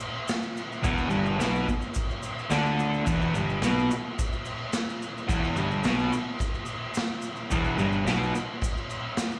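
A raw garage drum kit and a grainy tube shaker open this rowdy garage rock excerpt at 108 BPM in a straight 4/4, the drums boomy in the kick and saturated with a rolled-off top in a pumping stone room, while the shaker sits mellow in the background. At 0.8 s a double-tracked fuzz guitar enters up front with a distorted riff over an E5 chord, reaching from E2 to D4 and carrying a slapback echo. A fuzz picked electric bass arrives at the same moment, overdriven and amped, running from E1 to D2 beneath it. Guitar and bass drop out at 8.3 s, leaving the crash, snare and kick with the shaker for the final second. The whole performance sounds like a live gig heard through a club PA, with light club reverb and a faint mains hum.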